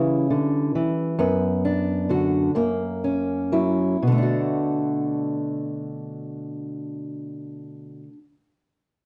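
A moderately large studio room with a reverb tail of 0.9 s surrounds this brief fragment of a longer folk piece, and the top end stays dull, topping out at 10.9 kHz. Alone and up front sits a fingerpicked old ladder-braced acoustic guitar, its tone dark, woody and boxy, with the dull bite of old strings. Moving in a straight 6/8, the guitar plays accompaniment across its range from F#2 to F#4. The opening passage slows down through its first 4.0 seconds, passing from C#dim to Bm/F# and on to F#, before a new section settles on Bm7. The mood is melancholic and intimate, like a quiet thought caught midway.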